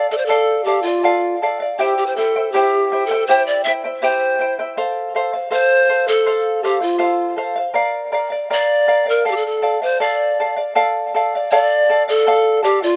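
A breathy, close-miked pan flute carries the melody from the first moment, its woody, straight tone showing a crisp, chiffy attack and an unsteady quality, while a fingerpicked charango shimmers beneath it with double strings, some doubled at the octave, and a touch of slapback echo. This Andean folk piece in D minor moves at a relaxed 80 BPM in 2/4, its Dm, C, F and Bb progression blending melancholy with a festive lift. Both bright instruments sit up front in a dry outdoor recording, and the passage is cut from a longer piece.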